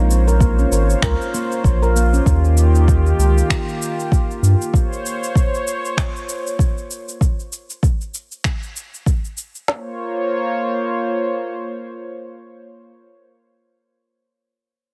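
Set in light reverb, this meditative organic downtempo fragment at 97 BPM in Bb dorian swings gently on the sixteenths, with a smooth sawtooth analog pad carrying sustained chorused chords that pump against the sidechain throughout. A deep, round analog bass stays up front only until 4.6 seconds, while a ringing nitrided-steel handpan plays brief, dark arpeggios through a digital delay in the opening two seconds. An organic electronic drum kit with a soft kick and woody snare sits forward beside tape-warm, small-room electronic shakers and finger snaps, both stopping near 9.8 seconds as the Bbm and Ebadd9 harmony gives way to a closing return to Bbm.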